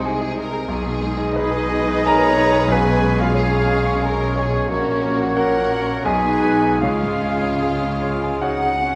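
A gently rubato triple metre carries this lyrical, lush fragment of a romantic movement for piano and orchestra, cut from a longer piece and lasting about 9 seconds. The grand piano sits up front with the melody, its polished tone and long sustain ranging from the deep bass to high in the treble. A distant violin section also carries the melody in a focused, vibrato-laden line. Around it weave second lines from a second, more expressive violin section in the background, a pure silver flute, a close-miked oboe and a very quiet, soft-attacked clarinet. A mellow bassoon and a smooth viola section fill in the accompaniment, dark French horns hold sustained chords, and a clear trumpet section adds roomy stabs, while cellos and double basses anchor the bass. The harmony moves from Ab/C through G#m/B and C#7/B to F#/A#, returns to G#m/B and settles on C# at 6.8 seconds, all bathed in a wet scoring-stage reverb.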